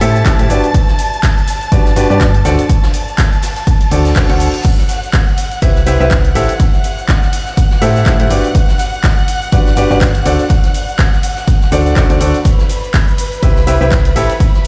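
Violins, piano, bass and two drum kits open together at the start of this uplifting, euphoric piano house passage, cut from a longer piece, moving at 123 BPM in G major with a light swing on the sixteenths. A clear, slightly worn grand piano sits up front with a riff carrying dub echo, while a lush, bowed violin section holds sustained chords with vibrato, pumping against the sidechain. Underneath, a round, dark FM bass with a fast attack and decaying notes pumps as well, and a punchy, tape-warm electronic kick enters at 0.3 seconds and drives the groove. The house kit adds cabasa, handclaps, crash, ride and hats in a small room, joined in the background by a brushed acoustic kit with dark cymbals and a medium-tuned snare. The chords cycle through Am7, Gmaj7, D7 and Cmaj7, and an electronic reverse cymbal sweeps in faintly at 3.8 seconds, with the whole mix heard through a big system in a bare, stone-like room.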